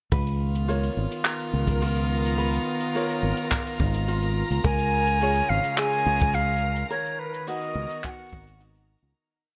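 Delicate and warm, this short folktronica piece moves at 106 BPM in a straight 4/4, centred on Db mixolydian as it drifts from Db13 to Bbm7 and then Cbmaj7. A dub-style fingered electric bass sits round and punchy up front, paired with a boomy, soft kick and a brushed kit whose clicking found-sound beat of cabasa, handclaps and half-open hi-hat stays dark with a rolled-off top. Over this, a thumb-plucked ukulele picks a sparse, light pattern touched with delay, while a dark string quartet, one player per line, bows slowly shifting chords sul tasto with an airy, intimate tone. From 1.6 seconds a reversed, detuned, granular texture holds a high note in the background with its own reverb. At 4.6 seconds a bright wooden flute enters up front with crisp attack and vibrato, singing short motif-based phrases through delay as the piece fades out from 6.2 seconds in a small, lightly reverberant room.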